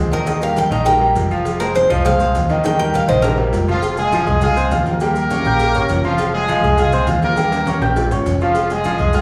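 A picked Cuban tres, its doubled metallic strings up front, carries the melody of this passionate, danceable salsa in a solo that ends at 3.4 seconds, and a tight, punchy horn section with vibrato and octave doubling takes the lead from 3.7 seconds with a distant, roomy sheen. Underneath, a brilliant concert grand piano with deep bass and a dark, amped fingered electric bass hold down the accompaniment, while soft-handed congas, a low-tuned cowbell, ringing agogo bells and timbales, and grainy maracas sit in the background, with a drum fill arriving at 7.4 seconds. The band sounds live in one room, washed in wet large studio reverb, in a clip cut from a longer piece.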